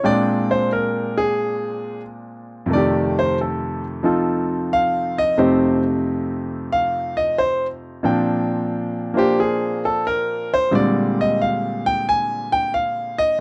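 A clear, natural grand piano plays solo jazz up front in a playful, relaxed excerpt at 90 BPM in 4/4 with a swung eighth-note feel, moving from Bb13 to F9 and back to Bb13 across a range from F2 to Ab5, heard in a dry, close 1970s-style studio sound with light reverb over 13.4 seconds.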